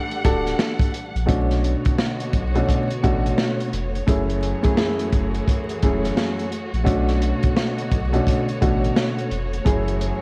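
A woody, intimate upright piano with audible action noise sits up front in this moody, dark boom-bap hip-hop piece at 86 BPM with a swung 16th feel in B minor, joined by a gritty, saturated breakbeat kit with a punchy kick, a round, deep sine sub bass, and a lush bowed string section with vibrato holding sustained chords through Em11, Bm9 and F#m9, the mix wrapped in worn, warbling cassette tape, vinyl crackle and small-room ambience.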